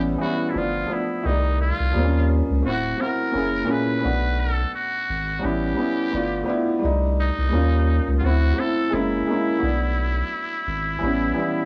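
A muted trumpet, a felt-muted upright piano and a saturated sub bass open this nostalgic, dreamy hip hop excerpt together at a relaxed 86 BPM, with a swung sixteenth-note feel. The buzzy, breathy trumpet carries the melody with vibrato, scooped notes and a growling jazz edge, bathed in plate reverb. Beneath it, the soft, intimate piano comps through a cycling progression of seventh and ninth chords, with its action noise audible, while the deep, thick bass sits up front until 11.3 seconds, all coloured by a worn, warbling cassette-tape character.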